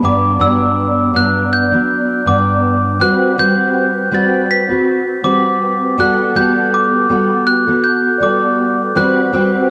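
A glockenspiel struck with hard plastic mallets carries the melody up front, its bell-like, metallic ring sitting between D6 and B6 and colored by analog chorus and a slapback echo. Beneath it, a fingerpicked steel-string jumbo acoustic guitar supplies a full-bodied accompaniment from G2 to B4, with audible finger squeak, an ensemble chorus and a warbly pitch drift. Both parts play together throughout this clip of about 9.7 seconds, which is cut from a longer piece. The mood is laid-back and sunny indie pop at 81 BPM in 4/4, with a light 55% swing on the sixteenths and tuning set to A4 = 438 Hz. The harmony moves from Em9/G to D6/G at 3.0 seconds, then Gmaj9 at 6.0 seconds, and closes on a rootless D13/G, all wrapped in a moderate plate reverb and a dark production.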